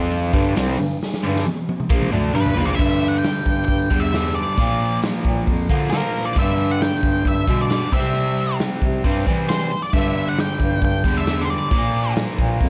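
A straight 4/4 pulse at 134 BPM drives this sunny classic rock excerpt, where a gritty, punchy garage drum kit in a bright stone room sets the groove with a fill from 1.0 to 2.8 seconds, a crunchy, double-tracked overdriven guitar riff sits up front over G5, Bb, G and C chords, a warm classical-style bass clarinet carries the low line, and from 2.4 seconds a dark octave-fuzz lead guitar with slapback echo plays the melody.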